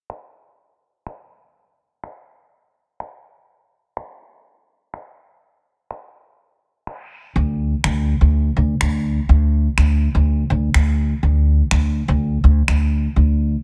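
A dry, densely limited and low-pass filtered mix carries this bittersweet yet confident dance-pop excerpt in a straight 4/4, where layered electronic finger snaps, re-recorded in a small room with soft clipping on the snare, open under a filter sweep until a woody, growly pizzicato upright bass on steel strings enters up front at 7.4 seconds and continues after the snaps stop at 12.8 seconds.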